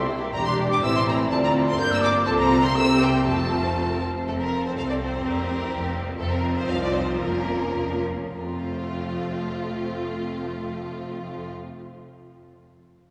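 A quick, spirited classical-period orchestral movement in 2/4, taken with a flexible rubato and cut from a longer piece, with a clear, focused violin section carrying the melody over a rich, lush second violin line, expressive viola accompaniment with portamento, and bright, intense cellos joined by smooth double basses on the bass. In the opening seconds a silver, airy flute, a dark clarinet and a mellow bassoon add background lines until about 4.0 s, the flute and clarinet sounding distant, while a very quiet, tight horn section holds dark sustained chords throughout. The music slows between 5.7 and 8.3 s before settling on F at 8.3 s, all heard in the wet, long reverb of a church.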